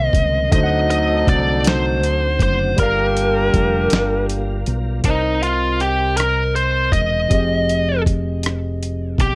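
An overdriven, biting lead guitar sits up front carrying the melody in this yearning, late-night slow six-eight R&B excerpt in C minor at 53 BPM, turning into a solo at 5.0 seconds as the piece moves over Cm7 and Fm9. Beneath it, a barky tine electric piano through a combo amp, a round, punchy fingered bass and a gritty, compressed sampler-style soul kit with a thumpy kick hold the groove. A smooth tonewheel organ with rotary speaker adds sustained chords until the first section ends, while a mellow, tight jazz horn section adds stabs that drop out just before, all under light reverb.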